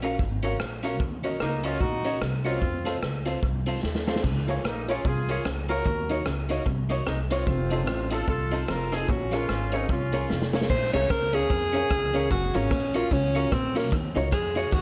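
An energetic, driving ska excerpt in Bb minor opens at 148 BPM with a swung feel, as a clean, twangy electric guitar, a dark, slightly detuned upright piano with dub echo set in the background, a woody, thumpy pizzicato upright bass and a raw garage drum kit all start together. The kit sits up front with a punchy kick, a medium-tuned snare, rim clicks, hi-hat, and crash and splash cymbals, its gritty, saturated sound carrying dub echo and a rolled-off top. At 1.4 s a clear, tight horn section takes the melody with light vibrato, and a second, very quiet picked guitar adds a low riff from 4.2 s after a drum fill. The chords move through Gbmaj7, Ebm7, F, Db6 and F7 to Bbm7. Following another drum fill, an edgy, close-miked alto saxophone steps up front for a punchy solo with scooped notes and dub echo at 10.7 s, running to the end of the cut under light studio reverb.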